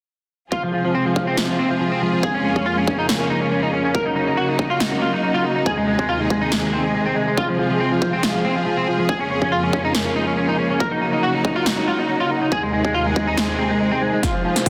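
Aggressive and chaotic, this heavy wobble dubstep cut moves at 140 BPM in 4/4 with a half-time feel, set in F phrygian and taken from a longer piece. A bright, clean semi-hollow electric guitar carries the melody up front, its picked hollow-body tone thickened by ensemble chorus, softened by a low-pass filter and trailed by dub echo. Beneath it a clear studio string section holds bowed, lush chords with vibrato and a sidechain pump, while a warbling, lo-fi pad of detuned sawtooth and triangle tones sits dark in the background from 0.8 seconds, nostalgic with chorus and its own reverb. A punchy, tape-warm electronic kick drives from the start, joined at 1.4 seconds by an up-front dance kit with a punchy snare and crisp hats, both re-recorded in a large room. The harmony cycles through Fm, Db6/F, Ebm7 and Ab/Eb. The kick drops out at 13.4 seconds before a drum fill and a barely audible riser close things out, all bathed in a lush hall reverb and a dense, heavily limited modern master.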